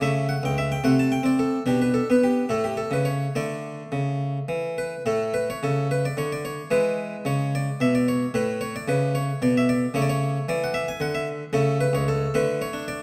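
A solo harpsichord in the Flemish style carries this short passage cut from a longer baroque-style suite movement, its plucked, round tone sounding up front on a single set of strings. The music is dance-like and flowing, in 6/8 at roughly 68-77 BPM counted in dotted quarters, and the player shapes the line with a supple rubato. The opening seconds move through colorings such as A/C#, D7/C and Bm7 before the key settles in A major from 5.0 s, where the harmony moves through A, E, A/C# and D5. The part spans C#2 to A5, and the instrument is tuned with A4 at 443 Hz. Close, detailed microphones capture the instrument, set within a moderate scoring-stage reverb with a 1.8-second decay.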